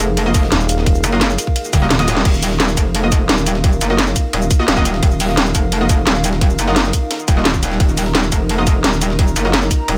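Tense and mechanical, this dark technical drum and bass excerpt is driven by a metallic, saturated wobble bass up front with chorus and sidechain pumping, joined briefly by a thick, growling FM bass. A moody, detuned analog pad holds sustained chords in the background, opening on Ebmadd9, and a very quiet ambient pad drops out at 2.3 seconds. A tight electronic kick, a layered kit with a cracking snare, metallic hats, shaker, toms and crashes, and a gritty, compressed breakbeat layer with a high-tuned snare drive the drop. A drum fill from 1.7 to 2.3 seconds carries a band accent at 2.2 seconds, and bold, punchy orchestra-hit-like synth stabs ring out with tape echo over a dry, close-sounding mix.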